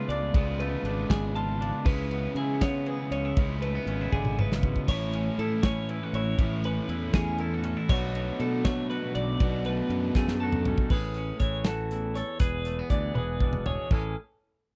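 A twelve-string electric guitar rings out bright, twangy arpeggios over a twangy clean electric guitar's accompaniment from the first moment, setting a wistful yet sunny math rock and midwest emo mood in A major. At 80 BPM in a straight 6/8, a growling overdriven fingered bass and a loose indie drum kit arrive almost at once, the kit sitting up front with a punchy kick, medium-tuned snare and dark cymbals. A cranked, double-tracked stack guitar adds a warm overdriven riff until 10.9 seconds, where it drops out as the music shifts into a brief new passage. The harmony colours its path with rich extended chords, moving from C#7b9b13 through C#m7, A69 and Bm9 before settling on Amaj7 and E7 and landing back on Amaj7. Drum fills mark the turns, including one at 4.1 seconds, and the whole is captured as a dry, close 1970s-style studio recording with a small room ambience, cut from a longer piece.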